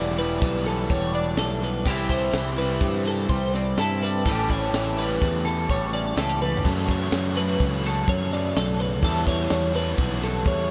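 A bright, compressed twelve-string electric guitar shines in this short math rock and Midwest emo excerpt, picking shimmering arpeggios high in its range through analog chorus and analog delay. Beneath it, a double-tracked, overdriven semi-hollow guitar carries the riff, while a clean, twangy electric guitar adds accompaniment with a subtle chorus until it drops out at 6.7 seconds. A growling fingered bass, warm and pushed through overdrive, anchors the low end, and a crisp, airy fusion kit sits up front with a high-tuned snare, tight kick, hi-hat, ride, crash and toms. The mood is intricate and playful at 125 BPM in a straight 5/4, moving through Em7, C and A7 before a drum fill at 6.4 seconds leads into a second section on F#m and Em. A huge ambient reverb soaks the whole mix in a dreamy haze.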